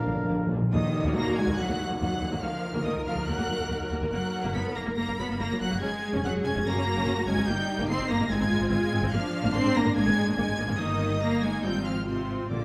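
A dramatic, stormy classical excerpt for symphony orchestra at 142 BPM in a rubato 4/4, moving from Eb minor into Eb major at 7.5 s. It opens with a timpani fill beneath distant winds and brass: a roomy oboe, a barely audible clarinet, a soft bassoon, a mellow French horn section and a dark, tight trumpet section, all gone by 0.5 s. A brief accent follows at 0.7 s, while a shadowy tam-tam sounds from 0.7 to 2.4 s. A smooth, lightly vibrato violin section carries the high melody over a lush second violin line, focused violas, a clear cello section and a rich double bass section, all heard through a reverberant scoring-stage acoustic.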